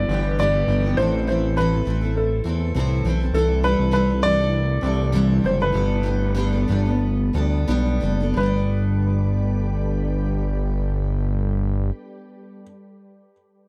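Easy-going and heartfelt, this pop excerpt in G major moves at 86-102 BPM in 4/4 with a light swing on the sixteenths, slowing down from 3.3 to 8.4 seconds. An intimate upright piano carries the melody, its woody, slightly detuned tone and audible action noise set off by a digital delay. Beneath it, a double-tracked steel-string acoustic guitar plays picked accompaniment with a full-bodied jumbo sound and the odd finger squeak, sitting up front alongside a fat, saturated analog bass built from detuned sawtooth with a filter pluck. A glassy FM pad, very quiet and ethereal, holds sustained chords with slow attack, ensemble chorus and its own reverb. The harmony passes through G6, Am, C6 and Gadd9 in a small, moderate room, with a brief second section arriving at 8.4 seconds before the pad and bass stop at 11.9 seconds.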